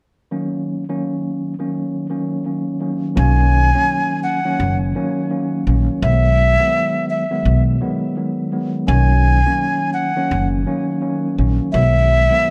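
A breathy, reedy concert flute with vibrato, a crisp attack and tape echo carries the melody from 3.2 seconds in this soulful, confident boom-bap hip-hop excerpt, entering alongside a woody, thumpy pizzicato upright bass over a mellow, clean tine electric piano with a cassette-tape tint that plays alone from 0.3 seconds, the whole piece swinging its sixteenths in light reverb.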